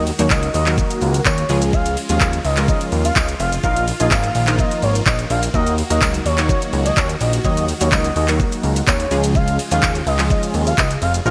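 A fat, saturated analog bass, a punchy, funky polysynth comp with chorus, huge phased supersaw chords in the background and a smooth, dark portamento lead with vibrato, chorus and delay open this bittersweet, driving dance-pop excerpt in a bright 1980s-style digital production with light reverb, the comp, chords and bass pumping to the sidechain as an up-front electronic R&B kit of knocking kick, metallic hi-hat, handclaps and shaker joins at 0.1 seconds and a jingly, close tambourine sits behind from 0.3 seconds.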